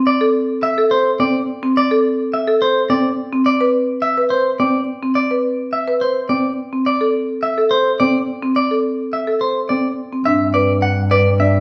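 Bright and hypnotic, this short cut from a longer minimalist classical piece in 3/4 opens with woody marimba arpeggios struck with hard mallets, joined almost at once by a twangy, picked clean electric guitar melody up front, while a dark, mellow baby grand piano adds long-sustaining accompaniment from 1.2 seconds. The harmony circles between A minor and an open C major seventh before shifting to G at 10.3 seconds, where a smooth, bowed double bass with vibrato enters beneath. A wet, large studio reverb places the ensemble further back in the room, with a softened, band-limited top end.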